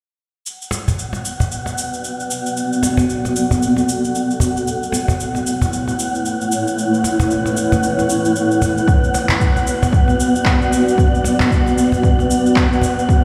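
Organic downtempo in B minor at 114 BPM with a swung 16th feel and a mystical mood, opening at 0.5 s with tape-warm electronic shaker and handclaps, soon joined by a snappy acoustic cajon and an airy, breathy wind-like tuned noise texture, while from 1.9 s a cloudy, detuned granular cloud pad pumps against a sidechain under a filter sweep, holding mellow sustained chords that move from Bm7 to A6 to Bm, until a punchy, layered electronic kick drum lands up front at 8.9 s, the whole mix set in a lush hall reverb in this section cut from a longer piece.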